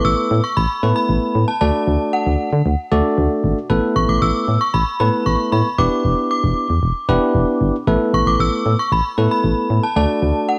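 A straight 4/4 pulse at 115 BPM drives this upbeat, bright synth-pop clip, cut from a longer piece, where a punchy, round FM bass sits up front from the start to 10.3 seconds under a clean, bell-like tine electric piano playing accompaniment through chords moving from Asus2 to D, Em7 and back. Above them a chiming, inharmonic synth chime carries the melody between F#5 and E6, its ringing tones given ensemble chorus and slapback echo. Light reverb and the wobble of worn cassette tape, with its warbly pitch drift, colour the whole sound.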